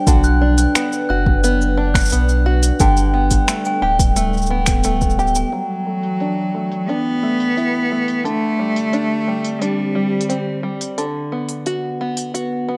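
A warbling, nostalgic tape-like pad and a twangy, fingerpicked open-back banjo playing low-pass-filtered arpeggios open this playful, hopeful folktronica piece at 88 BPM. They are joined almost at once by a round sine sub bass, a deep electronic kick, a smooth-hatted organic electronic kit of finger snaps, hi-hat and shaker, and a bell-like glockenspiel struck with rubber mallets through tape echo, all over Bm and Gadd9. Once the sub bass, kick and glockenspiel drop out, a rich, bowed cello with vibrato takes the melody through delay from 5.5 seconds while filter sweeps move across the banjo and pad over Dadd9 and Csus2, returning to Bm in a light small-room ambience.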